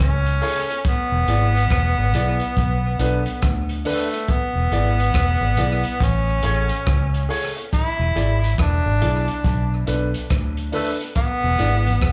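Heard through a club PA with light reverb, this sunny, laid-back roots reggae excerpt rides a swung 4/4 groove built on a dark, round, foam-muted electric bass up front and a gritty, saturated breakbeat kit of tight kick, hi-hat and rim click with a rolled-off top. A breathy, whispered tenor saxophone carries the intimate melody with vibrato and dub echo, while a woody upright piano adds stabs with slapback echo from 0.4 seconds over chords moving between Amaj7, E7 and Bm7. A mellow, lightly overdriven tonewheel organ with chorus vibrato and slow rotary speaker surfaces in the background at 11.4 seconds.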